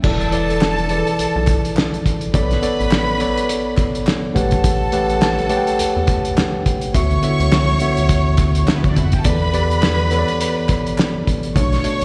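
Lush 1970s-style soul at 104 BPM in 4/4 with a swung sixteenth feel, romantic in mood, cycling through E7sus4, Bm9, A13 and D69. A mellow tine electric piano sits up front with a distant, bowed string section carrying a second line in vibrato, both touched with slapback echo, while a rubbery, resonant square-wave bass and a cloth-damped, thuddy kit with a fat snare, tight kick and dark, muffled cymbals drive the groove. Very quiet group handclaps join from 0.6 to 11.1 seconds, and the whole excerpt sounds like a live gig heard through the venue's PA, cut from a longer piece.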